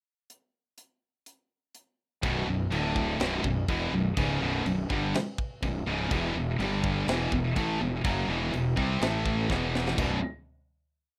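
Heavy metal in B minor at 124 BPM, this short, complete piece feels dark and relentless in a straight 4/4. A tight acoustic drum kit opens alone with a pickup bar at 0.3 seconds, its medium-tuned snare, tight kick and rolled-off cymbals sitting mid-forward in a studio room as it sets up a half-time metal groove. At 2.2 seconds three high-gain guitars crash in with a picked power-chord riff moving through B, D, E, G and A chords: one bright and distorted, one distorted and tucked in the background, and a double-tracked layer kept very quiet underneath. A growly, punchy fingered bass with fuzz overdrive enters alongside them up front, driving eighth notes that double the guitar riff in the low register. A drum fill at 9.5 seconds pushes into a final B minor chord that rings to the end. Light reverb and a rough home-demo mix give the whole thing a raw, unpolished edge.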